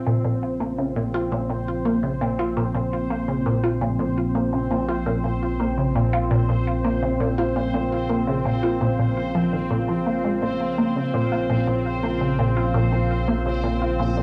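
A hypnotic, cosmic ambient piece in straight 4/4, cut from a longer work and held on a single B-flat minor chord throughout. Up front, a juicy, squelchy resonant blip pluck plays a riff with fast attack and short decay, coloured by phaser, lush chorus and delay. Beside it sits a bubbling stepped-filter texture, its detuned sawtooth tone jumping through random filter steps and wrapped in its own reverb. In the background, a sweeping resonant pad fades in from the start, holding sustained chords that evolve through slow filter swells under chorus. From 0.5 seconds, a mellow analog drone settles low on a single bass note, its pulse-width modulation and moving notch giving it a gently shifting body. The sound is that of a home cassette recording in a wet small room, with tape colour on the pad, texture and pluck.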